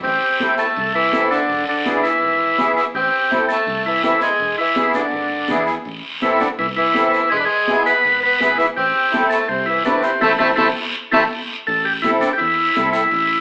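A buzzy, vintage combo organ carries the melody from the very start, joined at once by an edgy, punchy tenor saxophone on a second line beneath it, a round fingered electric bass and a raspy, saturated guiro. It is a fiery, danceable cumbia in A harmonic minor at 165 BPM in a straight 4/4, cut from a longer piece, with the harmony rocking between A minor and E7. A reedy accordion in musette tuning adds shimmering accompaniment, and bright, high-tuned congas with a damped, thin skin fill out the percussion. The organ sits up front with a light vibrato, while the foam-muted bass stays low in the mix. The tenor saxophone drops out at 11.2 seconds, and band accents and a fill lead into a short closing section at 11.7 seconds. The band plays live in one room, bathed in wet large studio reverb with an AM radio sound.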